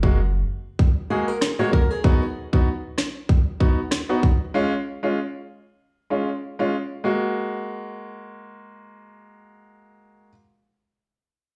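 Summery and sunny, this dancehall excerpt moves at 96 BPM in F# major with a lightly swung 4/4 feel, cut from a longer piece and set in a large, reverberant studio space. A clear, natural grand piano with short sustain sits up front as accompaniment through the chords F#add9, B and C#. An electronic drum kit of tight kick, rim click and sharp snare, overdriven and roughened with vintage 12-bit sampler grit, plays up front until 4.4 seconds. Briefly, from 1.1 to 2.2 seconds, a fingerpicked acoustic flamenco guitar adds warm arpeggios trailed by digital delay. The piano then carries on alone into a closing section that starts at 7.0 seconds.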